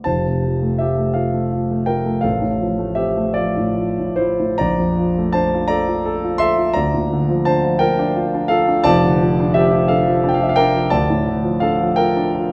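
Melancholic and wistful, this romantic classical nocturne for solo piano unfolds slowly in 12/8, its dotted-quarter pulse sitting between 46 and 58 BPM and bending freely with rubato. A warm concert grand carries the whole passage, sitting up front with a deep bass, its range spanning F1 to C6. The harmony opens in F major, moving from F through F/A to Bbmaj7 and Bb/D, before turning toward D minor at 8.8 seconds via Dm/F and settling on Dm. A wet recital hall reverb with a 1.5-second decay wraps the piano in its halo. Cut from a longer piece, the passage ends at 12.5 seconds, resting in its darker minor colour.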